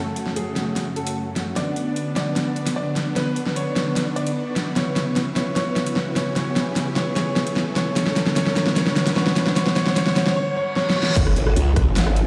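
A growling, saturated growl bass wobbles in at 11.2 seconds with a punchy electronic kick to hit the drop of this menacing, chaotic half-time heavy wobble dubstep excerpt at 150 BPM, after a build-up in which a clear, intimate grand piano melody with audible action noise runs through a low-pass filter sweep and dub echo over huge, detuned supersaw chords with sidechain pumping, an ethereal airy pad with ensemble chorus, a layered dubstep drum kit with a huge snare and metallic hats playing fills, and a background riser from 2.9 seconds, reverse cymbal and impact, all moving from F#m through Bmadd9 and C#m7, with lush hall reverb, played over a big sound system in a bare stone room.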